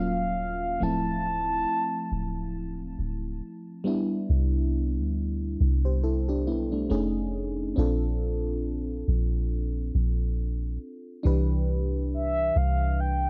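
A dreamy, tender contemporary R&B passage opens with all three parts at once: a horn-like synth lead carrying the melody, a mellow FM electric piano and a soft 808-style bass. The lead has a rounded sawtooth tone with a soft attack, vibrato and a filter sweep. It sings briefly in a high register until 2.6 seconds, then drops out and returns at 12.1 seconds to close the passage. Underneath, the electric piano holds the accompaniment throughout, full-bodied and dark, with a noise layer. It moves through lush extended chords: a brief Ebm9 sliding to Dm9, then Cmaj9, F7alt and Bbmaj9 before settling back on Cmaj9. The deep, sine-like 808 bass sits up front with a quick attack and decaying notes, while a gentle swing on the sixteenths and a chorused, cassette-tape haze on the lead and piano give this dry, intimate home recording its hazy, dreamy feel.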